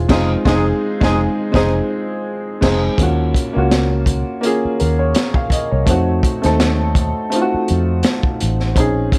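An up-front, woody upright piano, slightly detuned and vintage in character, carries the accompaniment through this sultry, smooth neo-soul and R&B excerpt, moving at 83 BPM in 4/4 with a light swing on the sixteenths. A crunchy breakbeat kit sits beside it, saturated and gritty, with dark, rolled-off cymbals, a high-tuned snare and a tight kick. Underneath, a vintage fingered electric bass gives a round, foam-muted low end. In the opening seconds a distant, roomy jazz-style horn section adds stabs, joining the band in an accent that runs until 3.0 s, after which the piano, bass and drums continue on their own. The harmony moves from Fm7 to Ebm9 at 3.0 s and to F7b9 at 5.9 s, all set in a studio reverb.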